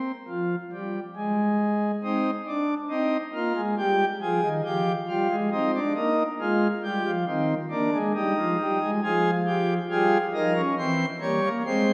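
A steady, straight 4/4 pulse at 69 BPM drives this baroque-style four-part fugue for pipe organ, a short passage cut from a longer piece that feels both driving and contemplative. A single pipe organ on a principal chorus plays alone from 0.0 to 11.9 seconds, its full, romantic voicing sitting up front and spanning Eb3 to Db5. The passage opens unharmonised before settling onto C minor at 2.0 seconds, then moves through Ebadd9, back to C minor, C minor over Eb and F minor, arriving at C7 over E at 10.8 seconds. A wet concert hall reverb with a 2.2-second decay surrounds the instrument, and the listener seems placed further back in the room, so the contrapuntal lines bloom into the hall's resonance.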